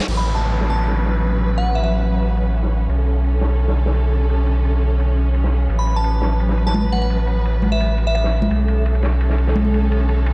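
Liquid drum and bass at 171 BPM in A major, warm and lush, where dark, bowed symphonic strings hold sustained chords over a thick, saturated sub bass up front and a crunchy, gritty breakbeat kit with dark cymbals and a rolled-off top, while an electronic downlifter opens the cut, a crystalline FM synth bell with chorus, phaser, 12-bit grit and dub echo sparkles at 0.2 and again at 5.8 seconds, band-limited vintage congas join at 6.7 seconds, and the chords move between A69 and Bm9 in a dark studio reverb.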